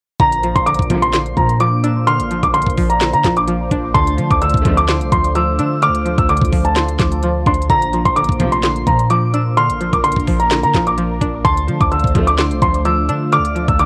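A mellow, dark grand piano carries the melody up front, hazed by cassette tape and analog delay, in this menacing, hard-hitting half-time trap cut at 128 BPM, over a crystalline, warbling synth bell in the background, a twangy string-like resonator pluck, a smooth detuned analog pad with a phaser, a deep, boomy 808 bass, a trap kit of knocking kick, sharp snare, crisp hi-hats and handclaps, and soft bowed studio strings adding brief floating stabs from 0.9 seconds, all cycling between Bbadd9 and Dm7 in a light-reverb home-cassette sound.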